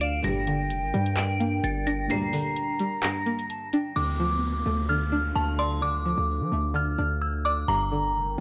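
Dark and melancholic, this short half-time trap cut sets an eerie, inharmonic synth bell melody over a twangy, warbling resonator pluck, a deep, moody analog pad and a punchy, heavy 808-style bass sitting up front. An airy, hollow concert flute carries a second line through delay for the first 4.0 seconds, while lush bowed strings add close, expressive stabs and a trap kit with metallic hats and handclaps drives the opening until its kick drops out at 2.1 seconds. Once the drums fall away at 3.8 seconds, an electronic downlifter sweeps through most of the second half under light reverb.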